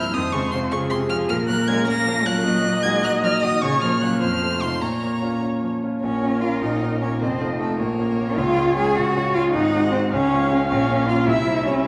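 In a straight 6/8 pulse at 103 dotted-quarter beats per minute, this quick classical-period movement for piano quartet in Bb minor feels restless and dramatic, and it is cut from a longer piece. A single bowed violin carries the melody with a rich, smooth tone and vibrato, sitting close and reaching up to Bb6. Beneath it a lone cello sings the second line with a soft attack, expressive portamento and warm vibrato, while one viola adds steady accompaniment with vibrato and a smooth top. The grand piano is clear and up front, with an intimate sound and audible action noise, spanning from F1 up to Gb4. The harmony circles Bb minor and F7 before turning toward Db and Ab7 around 8.4 s and closing on C. The quartet is heard from further back in a wet scoring-stage reverb.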